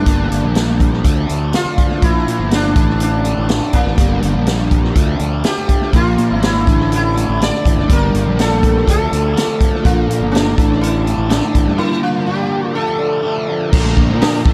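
Over a straight 4/4 pulse, a punchy, up-front vintage kit with tape echo drives this hypnotic, trippy psychedelic rock excerpt. High-tuned congas ring very quietly underneath, while a dark, round fuzz bass sits up front beside a bright, double-tracked overdriven guitar riff coloured by flanger. A buzzing, shimmering sitar carries the melody through tape echo over a buzzy combo organ holding chords in the background, all cycling through a Gmadd9, Dmadd9, Bb and Asus4 loop in an echo-heavy mix, with a break arriving at 11.8 seconds.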